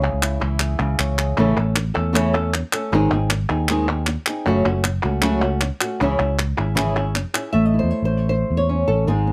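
Close, detailed microphones and a light reverb give this short flamenco passage an intimate, present sound. At 156 BPM in a straight 4/4, the mood is passionate and fiery. A fingerpicked acoustic flamenco guitar carries the melody up front, ranging from G#2 to E5. Beneath it, a warm, amped fingered electric bass holds the low end between F#1 and E2, while crisp palmas hand claps, close and dry, keep the pulse until they stop at 7.5 s. The harmony moves from C#m through A, G# and F#m, returns to C#m and arrives on A as the claps fall away, leaving guitar and bass to close out this 9.3-second cut from a longer piece.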